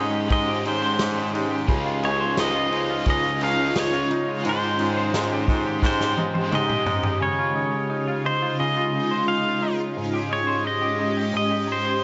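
Dreamy, blissful dream pop at 87 BPM in Db lydian, cut from a longer piece, where an up-front pedal steel guitar with fingerpicked volume swells and tape echo carries the melody over a shimmering, ethereal pad, chorused semi-hollow guitar arpeggios, a bright, double-tracked overdriven guitar tucked in the background, a clear baritone saxophone bass with vibrato and a soft attack, and a vintage drum kit with a punchy kick whose fill from 5.8 s leads to the saxophone and drums dropping out at 7.2 s, all bathed in huge ambient reverb and the warbling pitch drift of worn cassette tape.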